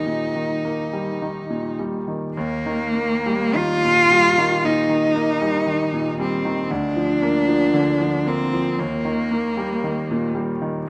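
The rhythm moves in a flexible rubato over a slow 4/4, drifting between 48 and 59 BPM, and gives this serene, tender romantic classical duo an unhurried breath. A single bowed cello carries the melody in a compact middle register, its rich, smooth tone shaded with vibrato and held close to the listener. Beneath it, a grand piano supplies the accompaniment from the low bass up to the cello's lowest note, its sound bright and polished while sitting a little lower in level. The harmony rests in Eb major, moves to Bb over D at 6.7 seconds and settles back on Eb at 8.8 seconds. A moderate reverb, like that of a scoring stage, lends the pair a gentle sense of space, with the cello ending at 10.4 seconds just before the piano's last sound fades at 10.9 seconds in this fragment of a longer piece.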